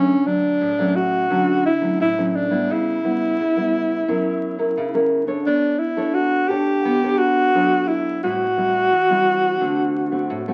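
Breathy alto saxophone and nylon-string guitar begin together in this sunny, playful samba, the sax carrying a mellow, whispered melody with vibrato, soft attacks and scooped notes in an intimate jazz style, close-miked and up front. The thumb-plucked guitar, deep and classical in tone, supplies accompaniment through chords moving from Dmaj7 through F#7 and Bm9 to D7. A wet small-room ambience surrounds the pair, and the crackle of a very old 78 rpm record colors this brief cut from a longer piece, which runs to 10.5 seconds.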